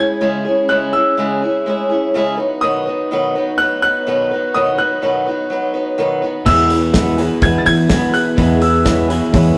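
Folk rock with a heartland rock lean, this brief, jangly and nostalgic cut moves at 125 BPM in a straight 4/4, in E major with a slightly low tuning, passing from C#m to B and landing on E. From the start, an open baby grand piano carries the high melody over a boxy, up-front ladder-braced acoustic guitar, picked and dark, while a very quiet chamber string section holds soft-attack sul tasto chords with light vibrato. At 6.5 seconds the band arrives: a slightly broken-up, compressed electric guitar through a small old amp plays a riff, a growly pizzicato upright bass with steel strings sits on a low E, and a damped 70s drum kit adds a tight kick, medium-tuned snare, hi-hat and dark crash cymbals. A mellow upright piano enters at the same moment, very quiet and woody, with audible action noise and long sustain. The whole take sounds like a rough rehearsal-room recording, bathed in a wet stone-room reverb.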